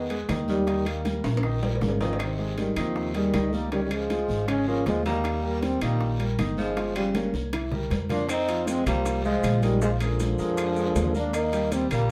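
A straight, danceable Afro-Cuban jazz groove in 4/4 is driven by an up-front, woody pizzicato upright bass, damped bright congas, ringing metal-shell timbales, round low-tuned bongos, very quiet claves and a raspy guiro, with grainy maracas joining at 8.3 s and drum fills at 1.2 s and 7.2 s. A dark, breathy trombone carries the sunny melody with light vibrato and scooped notes, while a gritty, growling tenor saxophone plays a second line and a natural-sounding grand piano adds accompaniment. Heard from further back in a small, reverberant room, this excerpt moves from Emaj7 through Abmaj7 and Dbadd9 before settling through Fm9 and Bb7 onto Ebmaj7.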